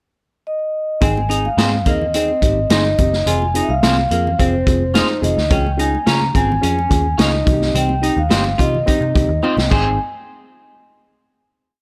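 Joyful and danceable, this short uptempo 1960s-style soul piece in Ab major moves at 107 BPM, opening with a vibraphone pickup at 0.5 seconds before the full band arrives at 1.0 second for a verse that runs through Ab, Fm, Db and Cm and closes on a final hit at 10.0 seconds. The soft-mallet vibraphone carries a mellow, ringing, motif-based melody with slapback echo over a punchy, up-front drum kit with dark cymbals playing a backbeat soul groove, a round, foam-muted bass line that is syncopated and melodic with chromatic approach notes, and very quiet high-tuned congas. A bright, reedy, lightly overdriven electric piano pushes eighth-note chords with grace notes and a fill near the end, a hollow-body archtop guitar repeats a clean, dark figure, and a twangy, slightly broken-up electric guitar with phaser adds short chops on the backbeat from 1.6 seconds, all set in an audible studio ambience.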